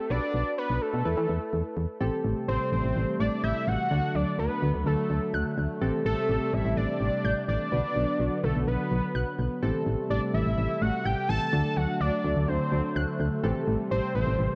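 Nocturnal and melancholic, this synth-pop excerpt moves at 126 BPM in A dorian, opening with a fat, vintage analog lead carrying the melody up front over round keys in the background and a punchy, mellow FM bass. At 2.0 seconds a bold, brassy pad enters with sustained chords and vibrato, joined by a warbling, lo-fi pluck spinning dark arpeggios in the background. The chords cycle through Am7, D and Bm, and the whole mix is soaked in a dreamy plate reverb, with chorus and delay giving the lead and pluck a hazy shimmer.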